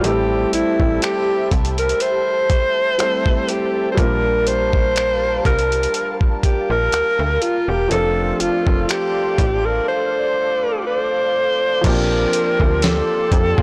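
Longing and late-night, this slow contemporary R&B excerpt at 61 BPM in G dorian sets a vibrato-laced alto saxophone melody with digital delay up front over a present baby grand piano, a glassy, ethereal FM pad with ensemble chorus and sidechain pumping in the background, a snappy slap-like FM bass, and a dusty sampler-style drum kit with thumpy kick, fat soft-clipped snare, hi-hat, finger snaps and crash, all in a blown-out, overdriven recording with light reverb, moving through Am7, Gm9/Bb and F6 before shifting to Bb69 at 11.8 seconds.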